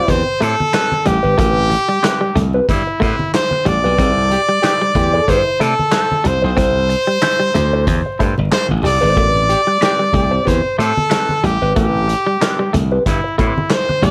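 Funk with a sly, swung 16th-note groove, this short excerpt is led by a brilliant, forceful trumpet melody with light vibrato, while a clear trombone drifts in the background only briefly, at the very start and around 4.3 and 9.5 seconds. A punchy, up-front slap bass and a vintage kit with tight kick, handclaps and a rolled-off top drive the beat, joined by low-tuned, thick-skinned congas. A dark, clean guitar through wah comps underneath as a bright, hollow-bodied semi-hollow guitar repeats a riff over Am9 and C6 chords, all under light reverb and vinyl crackle.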